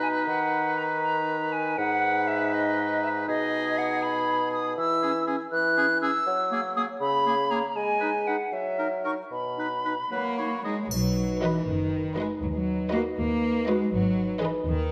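This short cut from a longer cinematic cue opens with a woodwind quartet in a playful, magical mood, set in B major at 80 BPM in a straight 6/8. An airy silver flute sits up front at the top of the texture, joined by a clear oboe with light vibrato and a distant, roomy clarinet. A mellow, soft-attacked bassoon carries the accompaniment below, as the harmony moves through chords such as G#m, C#m/E and F#9 before settling on B. Around 10.9 seconds the woodwinds give way to the orchestra. A rich cello section up front, which slips in slightly earlier at 10.1 seconds, and a dark, expressive double bass section take the bass, a tight French horn section holds sustained chords, and a close, dry triangle sounds briefly. From 11.4 seconds lush violins and violas enter softly in the background, one violin line gliding with portamento, all wrapped in the generous reverb of a scoring stage.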